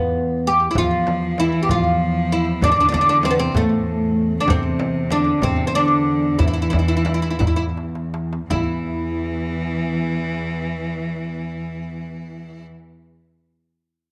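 Arabic maqam ensemble music in 6/8, melancholic and hypnotic and cut from a longer piece, set in a studio space with moderate spring reverb, where a bright, woody fretless oud carries the melody up front, its plectrum-plucked double strings touched by slapback echo. A dark, steel-strung pizzicato upright bass holds a low note beneath a veiled, muted cello section drone in the background, while a single bowed cello with vibrato adds a clear, focused second line from 0.8 s, joined by a crisp, very quiet metal-shell darbuka and a deep, soft-handed frame drum. The pulse slows from 4.5 s, a drum fill leads into the next section, and both drums drop out at 8.9 s, leaving the strings and oud.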